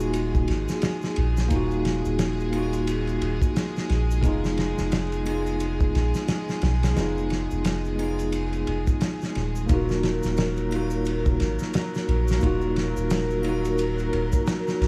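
A close, small-room trip hop excerpt at 88 BPM in Eb minor, cinematic and hypnotic with a swung sixteenth feel, where a bell-like tine electric piano with harmonic tremolo and tape echo comps over rich, earthy bowed chamber strings holding sustained chords, a deep, round dub sub bass sits up front beside a loose indie kit with a fat snare, tight kick and dark ride cymbal, and egg shaker, triangle and group handclap stay in the background as the harmony moves from Ebmadd9 to Fm7b5 at 4.2 seconds and back at 9.7 seconds.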